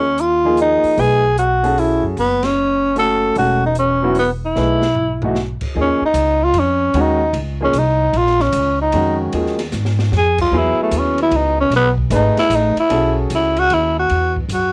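A swung waltz feel drives this searching, spiritual modal jazz excerpt, where a growling, breathy tenor saxophone with raspy, scooped notes and a cassette-tape tint sits up front over a woody pizzicato upright bass, a clear upright piano comping on suspended ninth chords, and a softer open jazz drum kit with dark cymbals, a boomy kick and its own cassette coloring, which adds fills around 4.6 s before the saxophone takes its solo at 5.8 s, all caught in a lightly reverberant home cassette recording with a band accent at 2.4 s.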